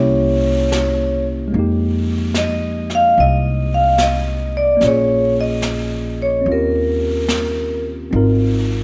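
Intimate and smoky, this short cut from a longer jazz ballad moves at an unhurried swing in 4/4, with a moderate echo-chamber reverb lending the whole a lingering, dusky air and a rolled-off top end. An up-front vibraphone, struck with medium hard mallets and its motor off, carries the melody in a metallic, ringing voice that sits in a boxy small room, falling silent at 7.8 seconds. Beneath it, a worn tine electric piano heard through a combo amp supplies the accompaniment, clean yet slightly out of tune, while a pizzicato upright bass with steel strings plays close and thumpy with a woody body. A brush kit joins at 0.7 seconds, its high-tuned snare and hi-hat heard naturally in a studio room, set well back beneath the other parts. The harmony drifts through altered and extended chords before settling on Ab6 at 8.1 seconds.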